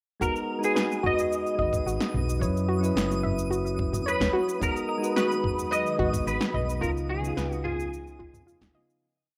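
Warm and relaxed, this short sunset chillout piece moves at 109 BPM in a straight 4/4 groove in G# minor, cycling through G#m7, F#7sus4 and C#9 chords. A bright, clean semi-hollow electric guitar sits up front with a picked, motif-based melody of call phrases, coloured by ensemble chorus and digital delay. Beneath it, soft electric-piano-like synth keys hold spread chords with syncopated pushes, while a mellow round pluck runs a 6-step arpeggiated loop that drifts against the bar, both treated with chorus and tape echo. The beat pairs a thumpy, gritty sampler-style kick with an overdriven deep house kit of cabasa, low tom and punchy snare, and a dark, round hollow-body bass enters at 1.6 seconds with a dub-style line. A twinkling granular texture holds a high sparkling note from 0.8 seconds, and a very quiet ethereal pad joins at 5.2 seconds, shortly before the rough home-demo mix begins its fade-out at 6.1 seconds, all within light digital ambience.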